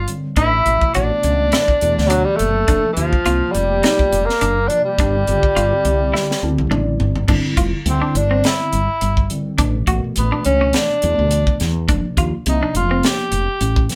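A tenor saxophone with light vibrato carries the melody over a round, woody fretless bass and a pure, straight-toned flute line in this funky, nocturnal electric jazz fusion piece, joined by a mellow tine electric piano through a phaser, a crisp, polished drum kit with a high-tuned snare and punchy kick, and bright, compressed stabs from a semi-hollow guitar, the band playing together in a small room, until a drum and electric piano fill at 6.1 seconds, the flute's exit at 6.7 seconds and the saxophone's solo from 7.3 seconds.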